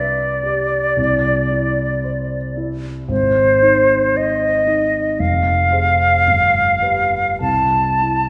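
Romantic classical duo for flute and grand piano, tender and warm, moving at a rubato 56 BPM in 4/4 through chords from C to Ab, Fm and G7 before returning to C. The airy concert flute carries the melody up front with vibrato and a soft attack, while the dark, mellow grand piano accompanies in a smooth, intimate, vintage voice with audible action noise. A wet recital hall reverb places the pair further back in the room.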